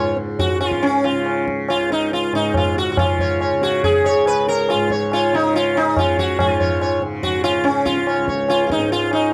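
Hindustani classical music in raga Khamaj on Db, serene and devotional, moving at 141 BPM in 4/4 and speeding up through this 9.3-second excerpt cut from a longer piece, as a bright, buzzing sitar with shimmering sympathetic strings carries the melody up front, a warm, softly plucked tanpura hums its drone beneath, and low-tuned, ringing tabla enters at 0.2 seconds, all captured in a dry, close, 1970s-style studio with small-room ambience.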